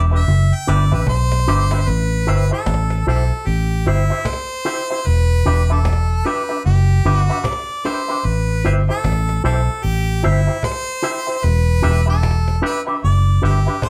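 Roots reggae with a laid-back, serious mood and a gently swung feel, this cut from a longer piece opens with a harmonica solo over a cajon fill before settling into a slow alternation of Em7 and Am7. A dark, round, foam-muted electric bass sits up front, while a clean, twangy electric guitar with an envelope filter and slapback echo provides the accompaniment. The woody cajon, played with soft hands and given its own slapback echo, supports a bright harmonica melody with light vibrato and scooped notes, all captured as a band playing live in one room with light reverb.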